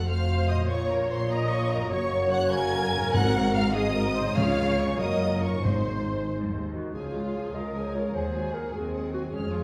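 A restless, dramatic stretch of a fast romantic orchestral movement in 6/8 and Db major opens with a clear, focused violin section carrying the high melody over a second violin line, viola accompaniment with portamento, mellow sustained French horn chords, a very quiet ringing harp playing arpeggios, and a lush bowed bass of cellos and double basses. Very quiet timpani struck with hard mallets sound dry and close between 3.1 and 6.3 seconds, and as the horns stop at 6.7 seconds, an up-front clarinet joins with a second line of its own. The rubato feel hovers around 91-101 BPM, and the whole passage sits back in a reverberant scoring-stage space.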